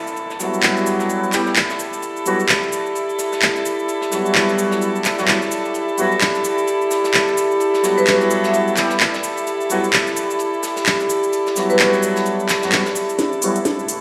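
A very quiet downlifter opens this gritty, swaggering bass house excerpt at 129 BPM in E minor, as floating, soft-attack chamber strings lay down a bowed texture over an Emadd9 chord and an overdriven house kit, with its cracking snare, metallic hats, cabasa and handclaps, pushes a swung groove over a tight acoustic kit sitting in the background. Punchy, dark horn stabs doubled in octaves ride up front through a filter sweep and dub echo, while a bright, ringing vibraphone with fast motor vibrato surfaces in the background at 8.0 seconds. A drum fill from 13.2 seconds and a closing riser end the passage, all carried in a stony, plate-reverb ambience like a big sound system in a bare room.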